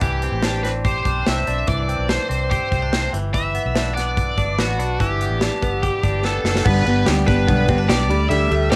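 A straight 4/4 beat at 145 BPM drives this breezy, nostalgic stretch of jangly indie pop in G major, built on a polished, airy studio drum kit with a punchy kick and bright cymbals, a dark, round, foam-muted fingered bass, and a twangy, compressed clean electric guitar playing phaser-tinged arpeggios over Cadd9 and G6. Up front, a high-gain distorted lead guitar carries the melody, and a drum fill from 6.2 to 6.7 seconds leads into a new section where a full-bodied, fingerpicked jumbo steel-string acoustic guitar joins as the chords move to G and Dsus4. It is a home recording on cassette with light reverb.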